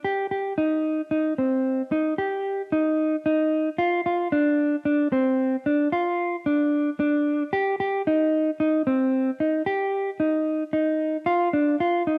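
Set in an asymmetrical 7/4 metre with a straight feel, this short progressive instrumental fragment, cut from a longer piece, feels intricate and tense. A single mellow electric guitar carries the whole passage as a solo from 0.0 to 12.2 seconds, staying in a narrow middle register. Its tone is dark and clean, fingered rather than picked, and it sits up front in the mix with a cassette-tape character. A moderate spring reverb and a digital ambience give the room some lingering decay. The piece is a home recording made on cassette.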